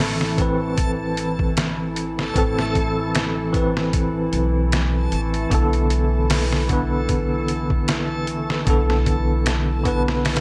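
Smoky and dark, this short trip hop excerpt moves at an unhurried swung pace, its chords shifting from Am to Bm7 at 5.5 seconds. A bell-like tine electric piano sits up front with tremolo and tape echo, over a warbling, nostalgic pad with lo-fi sampler grit and chorus, a reversed, dreamy swelling texture, and a woody pizzicato upright bass. From 0.2 seconds a gritty, pitched-down sampler-style drum kit with a thumpy kick and medium-tuned snare drives the groove, its kick dropping out at 10.2 seconds, all set in a light reverb.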